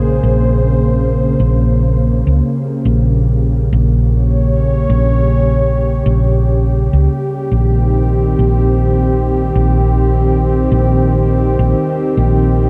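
A straight 4/4 pulse carries this spacious, meditative ambient dub fragment, cut from a longer piece, with a round, dark, hollow-body electric bass played with the fingers and a mellow, detuned analog pad of sustained chords, both sitting up front throughout. The pad blends sawtooth and square-wave tones with a sub octave, a slow attack, a long release and a chorus, moving from Bbm9 to Cm/Bb at 7.5 seconds. A plate reverb soaks the dreamy mix, and a faint mains hum sits underneath.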